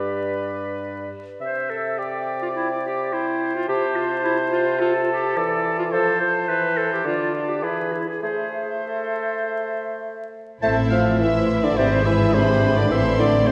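A quick, cheerful classical-period orchestral movement, taken from a longer piece with a spirited, rubato feel, opens with the winds: a bright, up-front clarinet and a clear oboe with light vibrato carry second lines alongside a pure, straight-toned flute, while a mellow bassoon supplies accompaniment. At 10.6 s the strings and horns enter, with the music already in the minor. Focused violin sections take the melody and a smooth-topped second line, lush violas accompany, a very quiet French horn section holds punchy sustained chords, and intense double basses join rich cellos on the bass line. The sound sits far back in a reverberant concert hall, with vinyl crackle throughout.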